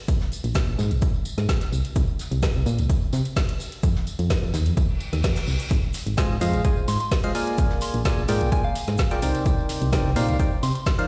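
Soulful and bittersweet, this piano house excerpt moves at 128 BPM in a straight 4/4, driven by a punchy, tape-warm electronic kick and a round, dark FM bass pumping from the sidechain, layered with a garage kit of woody snare and metallic hats, a background soul kit with a rolled-off top, hi-hat, shaker and snare, and a small-room tambourine, while a reverse cymbal sounds at 4.9 seconds before a hollow, percussive organ stab with chorus and tape echo enters at 6.2 seconds and a soft, pure FM synth bell with chorus, phaser and tape echo joins at 6.9 seconds, all resounding through a stone room's reverb.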